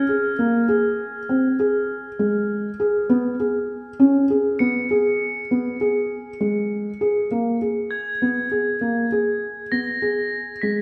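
Dark, intimate felt-muted upright piano arpeggios sit up front alongside a brief touch of quiet, shimmering, bell-like crotales struck with hard rubber mallets, which return at 4.6 s, in this hypnotic, urgent contemporary instrumental excerpt at 199 BPM in 7/8 and G# dorian, cut from a longer piece, shifting to a G#madd9 chord at 7.3 s inside a wet recital hall reverb over a faint mains hum.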